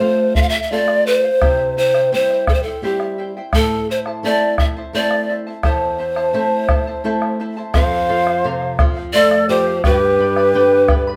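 A wet, roomy live-band sound frames this melancholic yet festive Andean folk piece in 3/4 at 86 BPM, where a breathy, wooden pan flute with vibrato and tongued chiff carries the melody up front over shimmering double-strung charango, fingerpicked flamenco guitar and a round, close bombo, until a bright bamboo shakuhachi with a crisp attack joins with a second line at 7.7 s.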